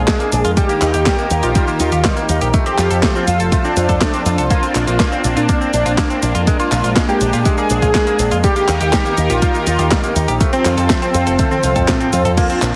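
Playful and romantic, this italo disco passage pairs a thick, detuned sawtooth unison lead carrying the melody through ensemble chorus and digital delay with a soft-attack analog pad of sustained chords, a punchy envelope-filtered picked electric bass, twangy clean electric guitar arpeggios treated with spring reverb and delay, an up-front electronic kick, and a tape-toned house drum kit with a cracking snare, cabasa, handclaps and a drum fill at 11.4 s, all pressed into a heavily compressed, radio-ready sound.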